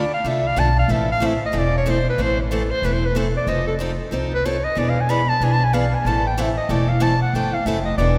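A brisk swung 4/4 pulse drives this short excerpt of acoustic string swing in the jazz manouche style, with a swinging, virtuosic mood. A clear clarinet carries the melody as a solo throughout its 8.2 seconds, its jazz phrasing marked by light vibrato and scooped notes. Beneath it, a picked steel-string parlour guitar supplies bright, boxy accompaniment, while a woody, thumpy upright bass, plucked pizzicato, anchors the low end. The harmony moves from Dm to Am, then through F7 and E7 before settling back on Am. All three instruments sit up front, yet the whole performance is bathed in a lush cathedral reverb, giving the sound the long, resonant air of a church or concert hall.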